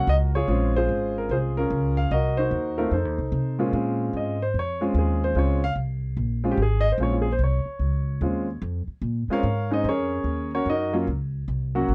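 Jazz in Bb minor at 147 BPM, swinging and moody, this short cut from a longer piece pairs a warm concert grand piano carrying the melody with a woody, thumpy pizzicato upright bass, both up front and playing throughout. The piano, natural-sounding with deep bass, moves through Bbm7, Cm7b5 and F7 in the opening section, then takes a solo at 3.7 seconds over Bbm7, later reaching Ebm7. The production is dark and dry, with little reverb.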